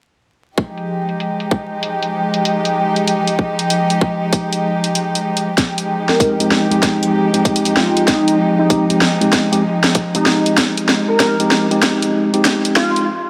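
A playful, funky glitch hop cut in F minor at 96 BPM with a swung feel opens at 0.6 seconds on an Fm9 chord: intimate, bowed chamber strings played sul tasto hold sustained chords under sidechain pumping, beside a tight, up-front electronic kick and a layered kit with low-pass filtered hats and a cracking snare. After the kick drops out briefly at 5.0 seconds, a build-up begins with a drum fill, and a bright, tearing oscillator-sync sawtooth lead with chorus, vibrato and delay carries the melody while clean tine electric piano stabs pump, both under filter sweeps. A lush hall reverb and vinyl crackle surround the mix until a break at 13.1 seconds.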